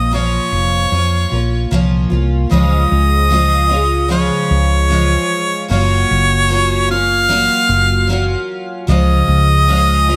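A clear, punchy harmonica carries the melody up front, its close-miked pop-style solo lines marked by light vibrato, scooped notes and a digital delay. The surrounding acoustic pop moves at 75 BPM in 4/4 with a gentle sixteenth-note swing and a sunny, carefree mood. A shimmering, octave-doubled twelve-string acoustic guitar, picked and double-tracked with a full-bodied jumbo sound, and a round, dark, amped hollow-body short-scale electric bass played with the fingers support it under light reverb, as the harmony moves from Bbm to Db at 2.5 seconds, then Gbmaj7 and back to Db in this excerpt from a longer piece.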